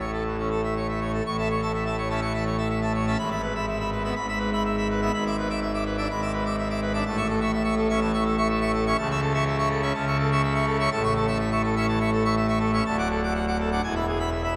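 A full pipe organ, brilliant with bright mixtures and up front in the mix, plays alone throughout this majestic, jubilant classical toccata, spanning from a deep D1 up to D6 with romantic voicing. At 124 BPM in a straight 4/4 and A major, the harmony moves from A through E and E7 over G# and A over C#, reaching D at 12.8 seconds and closing on E at 13.8 seconds. A long, wet church reverb of 3.6 seconds surrounds the sound in this passage cut from a longer piece.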